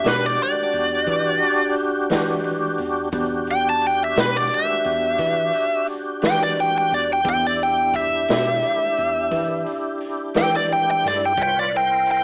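A biting, overdriven lead guitar opens this slow blues in 12/8 already in the middle of a solo, its bright, picked melody sitting up front over a band that plays from the first moment. Behind it, a tonewheel organ holds full, sustained chords through a slow rotary speaker with chorus vibrato, lightly overdriven and also placed forward. The bass line comes from a bell-like tine electric piano, clean and coloured by ensemble chorus. A raw garage drum kit of kick, snare and hi-hat sounds saturated and gritty, with a punchy kick and a dark, rolled-off top in a stone room. The smoky, mournful passage rests on an Em9 chord until a move to C7 at 11.4 seconds, and light reverb with a rough home-demo mix gives it a small-speaker sound.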